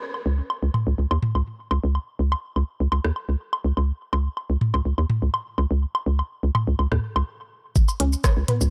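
Minimal techno with a cool, clinical mood, cut from a longer piece and built on a straight 4/4 pulse. From the start, a booming analog drum machine clatters through rim clicks, toms and woodblock with a tape-softened tone and an analog delay, alongside a hollow, bouncy FM bass that knocks out short, punchy, mellow notes and pumps against the sidechain. Both sit up front in a dry, gritty hardware sound with little reverb, until a break at 7.3 seconds. At 7.8 seconds an overdriven, layered electronic kick lands hard, joined by a quieter click kit of hi-hat, rim click and shaker that sounds re-recorded in a small room. A juicy, squelchy blip pluck enters at 8.0 seconds, its bright, resonant filter snap thickened by chorus, cassette tape coloring, analog delay and sidechain pumping as the harmony settles on a C#7(no3) chord.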